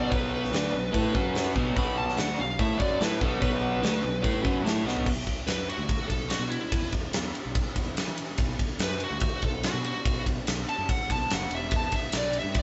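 A smoky, gritty blues rock and southern rock power trio groove in B minor opens straight away at 144 BPM in a straight 4/4. A dark, smooth overdriven lead guitar carries the melody from the start, while a double-tracked, scooped rhythm guitar pounds out a warm riff up front until 5.1 seconds. Underneath, a fuzz-drenched fingered bass growls with a bright, amped edge, and a huge arena drum kit with a fat snare, punchy kick, bright cymbals and a pumping hall sound drives everything forward. A drum fill at 4.9 seconds sets up the lead guitar solo, which runs from 5.1 seconds to the end over a B5, E5 and Em progression. The band sounds like it is playing live in one room with light reverb and a dusky top end, and the passage is cut from a longer piece.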